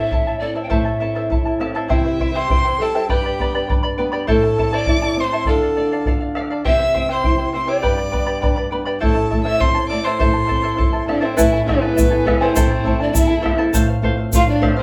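A straight 2/4 pulse at 101 BPM carries this wistful yet festive Andean folk piece in A minor, cut from a longer performance, with a deep bombo sounding from a large room beneath a fingerpicked flamenco guitar, its dark tone marked by finger squeak, and a shimmering charango with double strings. An airy bamboo pan flute with chiff and vibrato leads the melody from the start, and a single bowed violin joins at 1.9 s with a second line full of portamento. At 11.4 s the music moves to a new section over an E/A chord as a grainy egg shaker enters close by, all set in a small, reverberant room heard from further back.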